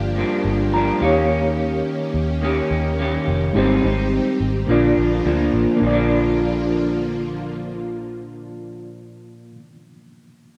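A straight 4/4 pulse at 106 BPM carries this nostalgic, hazy indie and bedroom-pop excerpt in Bb major, moving through Gm7, Eb7, Abmaj7 and Bb under a moderate plate reverb and a rough home-demo mix. Up front, a twangy, slightly broken-up electric guitar through a small old amp is coloured by lush chorus and vibrato, while a round, foam-muted picked electric bass anchors the low end. A reedy electric piano with fast tremolo and cassette-tape colour plays a fill from 0.4 to 1.3 seconds, and a sawtooth string-machine viola pad with a soft attack and ensemble chorus holds sustained chords until 8.8 seconds.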